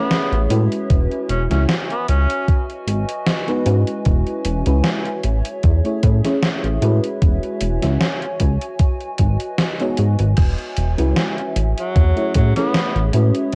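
Heard through worn, warbling cassette tape with little reverb, this dreamy, faded vaporwave fragment sets a clear tenor saxophone with light vibrato and sampler grit over lush, chorused FM electric piano with a soft pad layer, a dark, nostalgic tape-like pad, a glossy chorused synth bass up front, a thumpy overdriven electronic kick, and a gated 80s drum machine with gated-reverb snare, hi-hat and crash, while the saxophone opens the piece and returns at 11.8 seconds over Amaj7, E69 and G#m7 chords.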